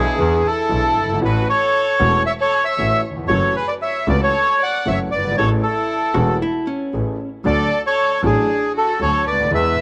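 The reedy, boxy bandoneon carries the melody up front in this elegant, playful tango fragment in A major, set at 116 BPM in 4/4 with a rubato feel. Behind it, a distant bowed violin traces an expressive second line with vibrato and portamento. A concert grand piano supplies smooth, vintage-toned accompaniment with deep bass, and a bowed double bass anchors the low end with a biting, intense edge and its own vibrato. At 6.1 s a clean, dark hollow-body electric guitar slips in with a brief picked, compressed second line, gone by 7.3 s. The harmony moves from E7 through A6 and F#m7 to Amaj7 before settling on D, and the whole passage sits in light reverb.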